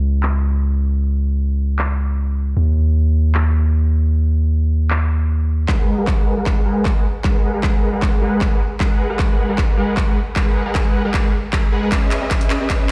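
Played back through a big sound system in a bare stone room, this future bass excerpt carries a light digital ambience and reverb. It moves at 154 BPM in a half-time 4/4 feel with a gentle swing on the 16ths, in G# minor, and the mood is emotional and dreamy. A deep, sine-toned 808-style bass opens up front with a fast attack and long decay, thickened by tube saturation and pumping against the sidechain, as a layered big-room kit of handclaps and hi-hat sits further back under filtering and studio reverb. At 5.7 seconds the bass drops away and huge, lush supersaw chords take over, bright and detuned in unison, pumping and swept by a low-pass filter through G#m9 and then C#m7. A punchy electronic kick arrives at the same moment, and both it and the kit carry overdrive as the passage becomes a build-up with a drum fill running to the end.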